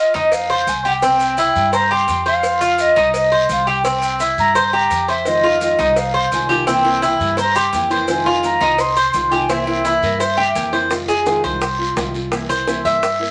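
An airy, hollow flute melody with vibrato opens this nostalgic, danceable Cuban son and guajira excerpt over bright, metallic double-string tres arpeggios up front, woody pizzicato upright bass, tight high-tuned cowbell and bongos, raspy guiro and grainy maracas in the background, with a fingerpicked nylon-string guitar accompaniment entering at 5.3 s, a brief boxy nylon-string guitar second line with finger squeak near 10.0 s, and the tres taking a solo from 10.9 s once the flute has stopped, all set in a wet studio reverb.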